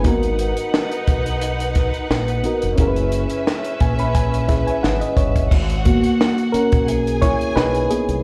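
A reedy, clean electric piano, a dark, compact cocktail drum kit with a high-tuned snare and tight kick, a round, punchy fingered bass and an intimate, bowed string section with vibrato open this smooth, bittersweet 1970s-style soul fragment together over a gently swung groove, heard through a club's PA with light reverb, as the piano slips in a fill at 3.5 seconds before taking a solo at 5.5 seconds.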